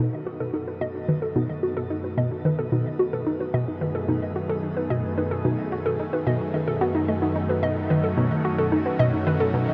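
A straight 4/4 pulse at 110 BPM drives this cosmic, hypnotic stretch of sequencer-driven ambient space music, cut from a longer piece and tuned slightly sharp to A4 = 441 Hz. From the first moment an analog pluck, the most forward part, repeats a riff between B2 and F#4 in a round, bright, detuned tone built from sawtooth, square and triangle waves, with a noise layer, ring modulation and a filter sweep. Above it a warbly, dusty, lo-fi pluck spins arpeggios from D#4 to D#5, its darker filtered tone also carried by chorus, analog delay and shimmer reverb. From 0.2 seconds a lush, thick unison pad fades in with a slow attack, holding sustained chords from F#2 to G#4 on a B7/F# harmony, coloured by chorus, phaser and shimmer reverb. The whole sits in a huge, wet ambient space with a 7.5-second reverb tail, giving the production a dark, warm depth.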